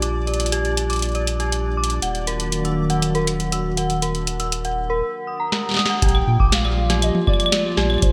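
Intricate and wistful, this 120 BPM IDM passage in Bb major, cut from a longer piece, moves from Bb6 to Ebm and back over a lo-fi, warbling tape-like pad with 12-bit sampler grit and a filter sweep, eerie inharmonic FM bell arpeggios through chorus, phaser and digital delay, a round sine sub bass with tube saturation, and a booming analog drum machine of crisp snare, metallic hats, claves and toms in gated reverb, while a reversed granular texture drifts in the background until 5.0 s, and after a drum fill at 5.5 s a nostalgic triangle-and-sawtooth lead with vibrato and portamento enters alongside a deep electronic kick at 6.0 s, the whole set in a bright 1980s-style digital production with plate reverb.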